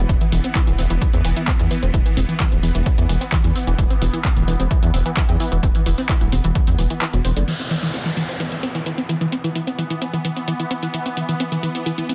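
A straight, driving 4/4 at 130 BPM carries this hypnotic, industrial peak-time techno excerpt, with a punchy, tape-toned electronic kick and an overdriven, layered kit of handclaps, filtered hi-hat and crash cymbal in a small room. A deep, rumbling detuned saw bass pumps under a tight sequenced sawtooth riff with chorus, phaser, overdrive and delay, while a swarming, warbling granular drone adds tension through its reverb and phaser. The kick stops at 6.6 seconds and the bass at 7.4 seconds, then a downlifter sweeps in at 7.5 seconds as a filter sweeps the synth riff, all inside a dense, heavily limited mix.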